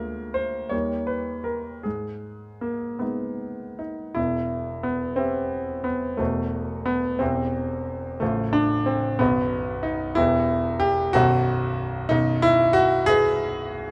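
A clear, intimate grand piano plays alone from the first moment, up front with audible action noise and short sustain, in a bittersweet, stormy romantic character piece cut from a longer work; it moves in a rubato 6/8 at 50-64 BPM in dotted quarters, tuned to A4 = 445 Hz and spanning A0 to F5, and it opens in G# minor before turning to E minor at 4.2 s, passing through Am69/E, C/E, F/A and B7b9 and settling on G#m/B at 12.1 s under light reverb.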